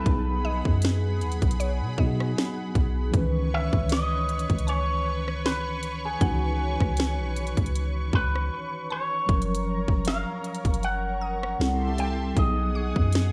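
Dreamy and smooth, this contemporary R&B excerpt moves at a relaxed 78 BPM in 4/4 with a slight 16th-note swing, drifting from B6 through C#m9 and F#maj7 to C6 before returning to B6. A twangy, scooped electric guitar with an envelope filter carries the melody, its clean, compressed picked tone trailed by digital delay, while a mellow tine electric piano fills in the accompaniment with a soft, speaker-coloured sound. A lush, thick unison pad of detuned sawtooth voices sustains airy chords above, shimmering with chorus and phaser and breathing with sidechain pumping. Underneath, a deep, boomy 808-style bass sits up front beside a trap drum kit of hard-clipped kick, sharp snare, rim click and crisp hi-hats, which enters at 0.1 seconds. From 0.4 seconds a woody, round, mallet-like FM pluck adds faint percussive sparkle in the background through chorus and delay, and a brief break from 8.5 to 9.3 seconds opens space before the groove resumes under light reverb.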